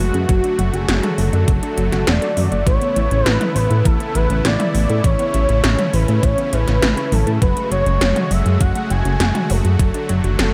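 Synthwave with a cinematic, nocturnal mood, where a smooth, expressive sawtooth synth lead with vibrato carries the melody over soft, detuned supersaw chords pumping with sidechain, a warbly, lo-fi pluck arpeggiating in the background through chorus and digital delay, a glossy, dark chorused synth bass up front, and 80s electronic drums with metallic hi-hats, gated-reverb snare and toms, and an overdriven, thumpy electronic kick, all moving through D/F#, Aadd9 and F#madd9.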